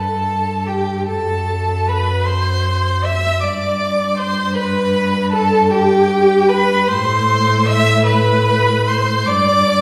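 Heard from further back in a recital hall, this string quartet recording is bathed in a wet reverb that lingers for about 1.5 seconds, lending the sound a sense of space and distance. It is a slow, romantic classical movement in G major and 6/8, moving at around 52 beats per minute with a freely breathing rubato that gives it a solemn, yearning character. All four bowed instruments carry a rich tone with vibrato throughout the 9.8-second passage, cut from a longer piece. The first violin sings the melody high above, shaping it expressively with portamento, while the second violin holds a smooth, even second line that sounds more distant. The viola's accompaniment has a soft attack and its own expressive slides, also set back in the room. Beneath them, the cello's focused bass sits up front, grounding the harmony as it moves from a chordless opening through F#m7b5, G and Am to a closing Em7 over G.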